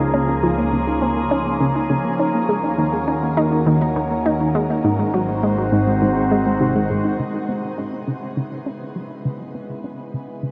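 Cosmic and expansive, this sequencer-driven ambient space music excerpt moves at 102 BPM in 4/4, with an up-front, morphing wavetable pad holding phased chords throughout while a soft, round background pluck arpeggiates and a fat, saturated analog bass anchors the low end until both drop out at 7.2 s, when the music settles into C# minor and a filter sweep colors the arpeggio sound, and a nasal, wave-folded analog pluck with 12-bit sampler grit and tape echo carries its riff from the opening to the end, all steeped in a dark, huge reverb with shimmer trails on the pad and plucks.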